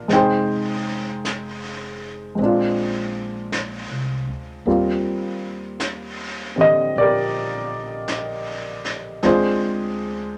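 Piano and upright bass open together, settling onto an Fm7 chord as a brushed drum kit joins a moment later at 0.1 seconds in this smoky, intimate slow jazz fragment cut from a longer piece. The baby grand carries the accompaniment from D3 up to G5, its tone warm, natural and up front, with audible action noise that draws the listener close. Beneath it, the pizzicato upright bass sits low and well back in the mix, woody, dark and thumpy from its gut strings. The vintage kit's brushes move over a medium-tuned snare and hi-hat with a rolled-off top and a small-room, acoustic character, giving the 4/4 a swing feel on the eighth notes. The harmony passes from Fm7 to Bb9 and a lingering Eb6 before settling on Dm7b5 at 9.2 seconds, all wrapped in a moderate club reverb.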